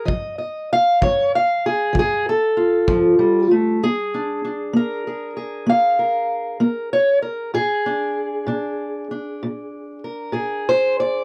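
Acoustic country blues with a laid-back, gritty mood, this short excerpt cut from a longer piece moves at 64 BPM in a straight 12/8 in Bb mixolydian. A fingerpicked steel-string acoustic guitar carries the melody throughout, sitting up front with a dark, boxy parlour tone and ranging from Bb2 to F5. A kick drum played with brushes sits distant in a small room, tight but roomy with a rolled-off top, and is heard only from 0.1 to 3.0 seconds. The opening passage is framed as a guitar solo over an F chord, and at 3.8 seconds the music shifts to a Bb7 for the second section, where the guitar carries on alone until the end at 11.2 seconds. A light reverb lends the recording a touch of space.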